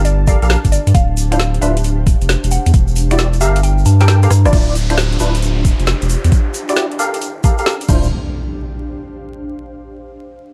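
Skippy and late-night, this two-step UK garage excerpt rides a deep, saturated sub bass and an up-front knocking kick under a garage kit of woody snare, metallic hats, finger snaps and rim clicks, with a grainy egg shaker, hollow chorused organ stabs that take a filter sweep from 4.5 seconds, a round mallet-like pluck with phaser and dub echo, a faint vintage pad, an ethereal airy pad that lingers to the end, a downlifter and impact, and vinyl crackle throughout.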